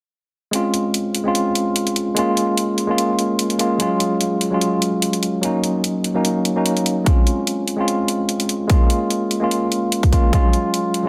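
Dreamy and emotional, this short future bass passage, cut from a longer piece, moves at 147 BPM in 4/4 with a half-time feel and a light swing on the sixteenths. A worn, slightly out-of-tune tine electric piano carries the harmony from the start, its clean tone heard as if through built-in speakers, pumping with sidechain and trailed by tape echo. The chords cycle through Dbmaj7/Ab, Bbm7/Ab, Dbadd11/Gb and Gb6 before returning to the opening progression. An overdriven electronic hi-hat runs alongside the piano throughout, layered and up front. A punchy, overdriven electronic kick drum joins at 7.1 seconds and drops out at 10.4 seconds, landing as the loudest part of the mix. Light reverb and digital ambience give the whole passage a soft sense of space.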